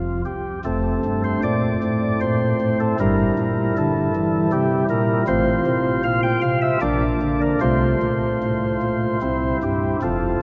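Majestic yet serene, this short excerpt from a longer classical chorale-style piece for pipe organ moves at 77 BPM in 3/4 with a flexible, rubato feel in F major, tuned to A4 = 439 Hz. A chamber organ plays alone on soft flute stops from F1 to G5, its warm chamber voicing sitting up front with a gentle chiff and a trembling tremulant. A lingering cathedral reverb of about 4.7 seconds surrounds the sound, and the harmony settles through F and Bb before resting on C at 9.2 seconds.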